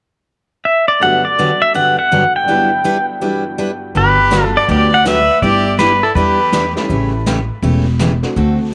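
Western swing country with a cheerful, swinging feel, cut from a longer piece and set in light, small-room ambience. A clean, up-front pedal steel guitar carries the melody from 0.7 s with fingerpicked slides, volume swells and tape echo, over a full-bodied jumbo acoustic guitar and a jangly, detuned honky-tonk upright piano tucked in the background. At 4.0 s a focused fiddle with light vibrato adds a second line, while a woody pizzicato upright bass and a distant, roomy brush kit with a punchy kick join in.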